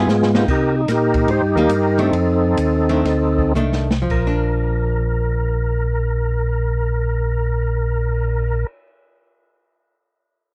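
A percussive, lightly overdriven tonewheel organ carries the melody in this bluesy, greasy soul jazz organ trio in Bb major, swinging in 4/4 between 106 and 152 BPM while slowing down from 0.5 to 4.1 seconds, joined by a round, mellow tonewheel organ bass with slow rotary speaker and chorus vibrato, a dark, clean, compressed hollow-body archtop guitar comping over Cm7 and F6 before landing on Bb, and an acoustic jazz drum kit with dark cymbals and a boomy kick playing fills at the start and around 3.6 seconds, all captured in a dry, close 1970s-style studio sound with light reverb in this short cut from a longer piece.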